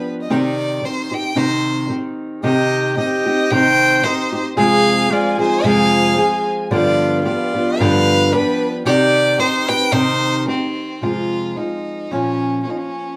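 Passionate and dramatic, this mariachi-style Mexican folk excerpt moves at 112 BPM in a swung 2/4 in C harmonic minor, its chords passing from Cm through Fm and G7 before turning toward Bbm near the close. A rich, focused solo violin carries the melody up front with vibrato over fingerpicked acoustic flamenco guitar. From 2.4 seconds a distant, roomy trumpet in classical style adds a second line while a very quiet chamber violin section holds soft-attack sul tasto chords with a smooth top, all within the wet reverb of a small room where the band plays live together.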